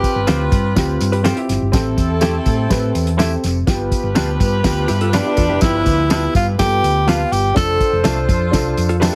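A breathy, up-front tenor saxophone with analog delay carries the melody through this danceable, uptempo 1960s-style soul fragment at 124 BPM, returning at 5.1 s over a distant, vibrato-laden saxophone section, a woody upright piano with audible action noise, a cloth-damped, thuddy drum kit with fat snare and tight kick, a jingly tambourine, a round, punchy short-scale bass, picked semi-hollow guitar stabs in plate reverb, and a clean, fingered jazz-guitar riff first heard at 1.1 s, all moving from G7sus4 through Am7 and G7 to F6 in a heavily compressed, radio-style sound.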